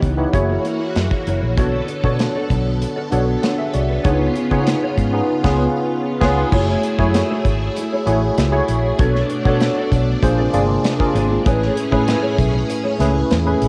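Recorded at home onto cassette with light reverb and a small-room ambience, this nocturnal, slick excerpt of polished 1980s jazz-funk pop puts a worn, slightly out-of-tune tine electric piano up front over swirling, sawtooth phased string-machine chords, with a dark, compressed mellow electric guitar riff in the background, a round, punchy foam-muted fingered bass and a smooth modern studio drum kit with a tight kick and rolled-off top, the band hitting an accent from 5.3 to 6.5 seconds before the second section begins.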